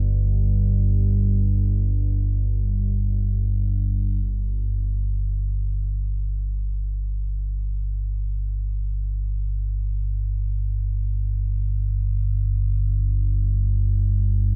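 Ambient music in free time, this short passage is cut from a longer piece and feels vast and ominous. A single deep, rumbling drone carries it alone from 0.0 to 14.6 seconds, sitting in a low register between G1 and G2. Its tone blends triangle and sawtooth shades into something dark, with a slow attack, long sustain and a lingering release. The drone has its own built-in reverb and sits up front, while the surrounding space stays dry. The passage moves from an opening section into a second one at 4.3 seconds, the same brooding sound holding throughout.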